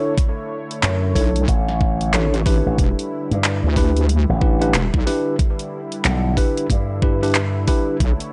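Glitch hop with a swaggering, playful swing, this excerpt opens on a smooth, detuned sawtooth pad with chorus sitting in the background, pumping under the sidechain beside worn, slightly out-of-tune tine electric piano stabs fed through analog delay, as the harmony moves from Bm11 to Em7 at 2.8 s. A knocking, overdriven electronic kick sits up front with a dubstep kit of huge snare, handclaps and bright hats. A punchy, amped slap bass with an envelope filter enters at 0.8 s, joined at 1.2 s by a heavy, resonant square-and-sine wobble bass thickened with chorus and tube saturation, all in a dry, gritty digital ambience.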